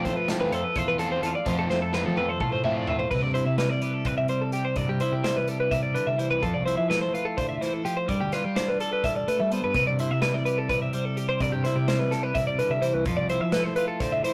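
A bright, twangy twelve-string electric guitar rings out up front with high picked arpeggios in this wistful math rock and midwest emo excerpt, set in C major at 253 BPM in a straight 7/8. A second, warm twelve-string picks compressed accompaniment underneath, a double-tracked crunchy overdriven guitar riff drops out at 3.0 seconds, and a round, dark fuzz bass carries the low end until 13.6 seconds. A loose indie drum kit with a tight kick plays a fill from 1.7 seconds as the harmony drifts through Fmaj7, Cmaj9 and G9, all within a rough rehearsal-room sound with light reverb and tube saturation.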